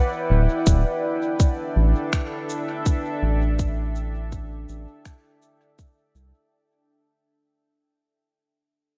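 A tight, tape-warm electronic kick drum sits up front in this short, hazy ambient dub excerpt at 82 BPM in 4/4, entering at 0.7 seconds with a gentle 16th-note swing. Beneath it, a round analog bass rumbles low from D1 to C2, its folded square, sine, triangle and sawtooth tones giving a dark, fast-attacking, sustained body. A deep, moody ambient pad holds chords from the start, its warbling vintage sawtooth unison and sub octave softened by chorus and built-in reverb into a mellow haze as the harmony moves from Em7 to Dsus4. Electronic cabasa and finger snaps, washed in dub echo, add a produced, tape-colored sparkle, while a bubbling sawtooth texture with resonant random filter steps drifts in the background on D5. The whole passage is a fade-out across its 6.5 seconds, set in light reverb with a softened top end.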